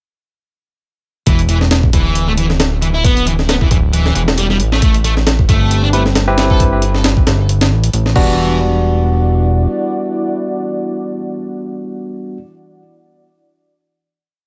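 A compressed, pitched-up breakbeat with a thumpy kick and high-tuned snare drives this raw, gritty breakbeat piece in E minor at 135 BPM with a light 16th-note swing, starting at 1.3 seconds together with a fat, detuned sawtooth bass of long gliding notes and a double-tracked fuzz guitar repeating a 32-step riff through distortion, tube saturation and delay. From 5.5 seconds a deep, moody pad sustains chords through chorus, reverb, 12-bit grit and sidechain pumping, soon joined by sparse, barky electric piano stabs echoing through delay. As the drop ends around 8.4 seconds, the drums and guitar fall away and the bass soon follows, leaving the pad and piano to ring out the final hit.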